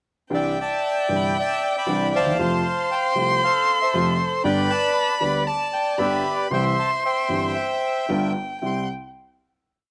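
Passionate and elegant, this short, complete tango in C major moves at 116 BPM with a rubato feel, as a reedy, bright bandoneon sits up front with a motif-based melody built in period phrases. A dark-toned solo violin bows an expressive counter-melody with vibrato, soft attacks, portamento and a slapback echo, while a clear, vintage-sounding concert grand piano up front lays down a deep-bassed milonga accompaniment. Recorded dry in the open air, the trio runs from 0.3 seconds through a G7 and settles on a final C chord at 8.6 seconds.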